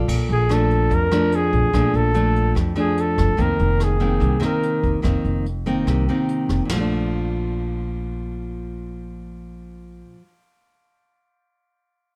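A fingerpicked nylon-string guitar with a deep classical tone and a woody, growly pizzicato upright bass open this relaxed, sophisticated bossa nova excerpt at 145 BPM in Bb major, moving from Bbmaj7 to F7sus4. A brushed jazz kit with dark cymbals and a boomy kick sits low in the mix, while the warm flugelhorn, placed up front, plays a jazz-style solo with vibrato and scooped notes from 0.3 to 5.0 seconds. The drums stop at 6.8 seconds as the harmony returns to Bbmaj7, leaving guitar and bass in a dark production with moderate studio reverb.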